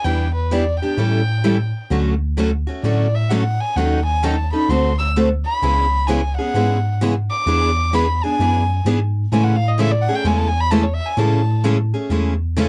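A nasal, intimate violin with an airy, soft-edged bow and light vibrato carries the lead in this lively, charming snippet of acoustic string swing, sounding close and a touch boxy up front before dropping out at 11.6 seconds. Two bright, freshly strung steel-string acoustic guitars provide picked accompaniment with audible finger squeak, one up front and the other set back in the background. A mellow tine electric piano holds down the bass line with a clean, direct tone, all sitting in a light reverb.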